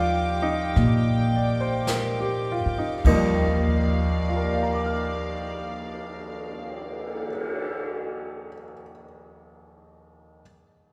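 This tender, romantic jazz ballad fragment opens on a major-ninth chord, with a clear baby grand piano, a soft-edged string section and a pizzicato upright bass sounding together in a slow, swung 4/4 that eases back over its first few seconds. The piano sits up front with an intimate, natural tone, long sustain and audible action noise. The bass is woody and close, while the bowed strings hover far behind as a pure, floating sul tasto pad. A brushed drum kit joins at 0.8 seconds, adding dark cymbals, a cymbal swell, hi-hat, a boomy kick and brushed snare at a low level. The strings and bass drop out at 7.2 seconds, the drums follow at 7.7, and the piano carries on alone, all of it steeped in the long, wet reverb of a church or concert hall.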